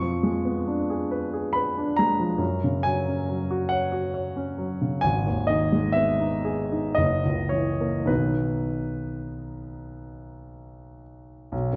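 Nostalgic and tender, this short passage from a longer romantic nocturne is played by a solo grand piano in B major, moving in a rubato 3/4 at roughly 50-72 BPM. The piano sounds polished and present, placed up front and spanning F#1 to C#6, as the harmony passes from Fdim7 through F#5, G#m and F#7 before settling on B at 8.1 seconds. A recital hall's reverb, with a 1.7-second decay, wraps the playing in a dark, warm glow until the piano stops at 11.8 seconds.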